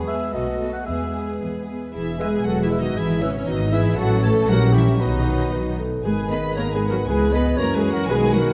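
Graceful and cheerful, this quick classical-period movement for symphony orchestra moves at 117 BPM in 2/4 with a straight feel, in E major and tuned to A4 = 442 Hz, cut from a longer piece. Rich violin sections carry an expressive, vibrato-laden melody, with a second violin line set further back, over a smooth, even viola accompaniment and mellow sustained chords from a tight French horn section in the background. Beneath them, a woody, lush cello section and an up-front, dark double bass section with soft attacks and portamento anchor the bass. A cor anglais adds a second line almost at once, a pure, metal-toned flute joins at 1.9 s, and a very quiet clarinet and bassoon enter at 2.2 s, the bassoon in accompaniment. The harmony moves from B7 to E, then through F#m7/A, A#dim7, B, G#m and C#m7 before reaching F#7, heard in a wet concert hall reverb with a warm production.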